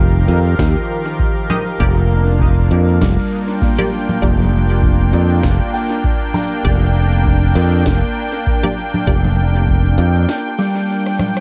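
A growly, bright fingered electric bass sits up front in this spacious, meditative ambient dub excerpt with a light sixteenth-note swing, over a smooth detuned sawtooth pad with chorus, a buzzing, woody kalimba playing arpeggios through dub echo, a glassy drifting-harmonics texture in the background, overdriven electronic shaker, snare, congas and rim click with dub echo, a deep tape-toned electronic kick, and muted chord stabs coloured by phaser, 12-bit sampler grit and echo between 1.5 and 9.2 seconds, all in a fairly dry mix that opens into a break at 10.3 seconds and a closing drum fill at 11.0 seconds.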